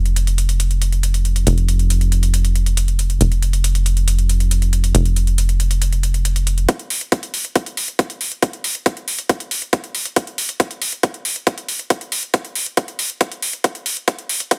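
A dry, high-passed cut from a longer psychedelic trance piece at 138 BPM in straight 4/4 opens on a tight, evolving sawtooth sequencer bass with a plucky filtered attack and mellow decay alongside metallic, overdriven electronic hi-hats, until at 6.7 seconds the bass stops and a punchy, overdriven kick with a high-pass filter joins the hats for a driving build-up that ends in a drum fill from 13.6 seconds.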